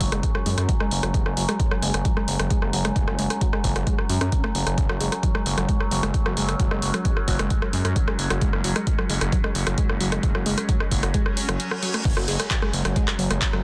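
Relentless and industrial, this excerpt of driving peak-time techno runs at 132 BPM in a straight 4/4, cut from a longer piece and built around F#. An up-front electronic kick and a punchy analog drum machine, both re-recorded in a small room, carry the beat with crash cymbal, handclaps, hi-hat and rim click, the snare pushed into soft clipping. Beneath them a gritty, aggressive synth bass blends square and sawtooth waves with oscillator sync and a moving notch, tube-saturated and pumping against the kick, while a lush, detuned unison pluck plays the riff through dub echo. A bright, resonant drone with ring modulation and chorus hangs over the groove, its overtones shifting as it pumps too. A filter sweep on the arpeggiated synth builds until a reverse cymbal rises from 11.3 seconds, a band accent lands at 11.7, and the drop hits at 12.1 seconds, all in a dense, heavily limited modern master with light reverb.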